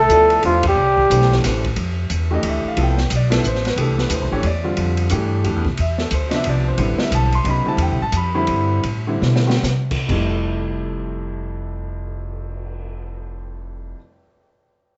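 Modal jazz in 3/4 with an open, searching mood, swinging at 125-180 BPM in F lydian, where a breathy, mellow trumpet with scooped notes and vibrato carries the melody over a soft-attack trombone second line in the background until both stop at 1.4 s after a band accent, leaving a woody pizzicato upright bass up front, a clear grand piano moving from Fmaj9 to Am and back, and an acoustic drum kit with dark cymbals, a high-tuned snare and a boomy kick that adds a fill at 9.2 s as the tempo slows from 7.8 s, all in a small room with light reverb.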